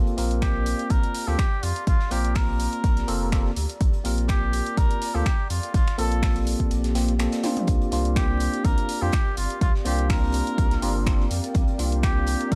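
Vinyl crackle and a small room ambience frame this warm, deep house excerpt, where an overdriven, punchy electronic kick sits up front beside a round, sine-toned sub bass that pumps under the sidechain, and the kick drops out from 6.7 to 7.7 seconds around a drum fill. A bell-like tine electric piano plays clean stabs through phaser and tape echo, while a soft, veiled cup-muted trumpet carries a jazz-style melody with vibrato and analog delay. Underneath, an overdriven house kit adds bright hats, snaps and toms, a very quiet loose indie kit adds a fat snare, a warbling, nostalgic tape-like pad hovers in the background, and the harmony moves from Gm11 to C9sus4 at 7.7 seconds before a moody, detuned ambient pad enters at 9.3 seconds.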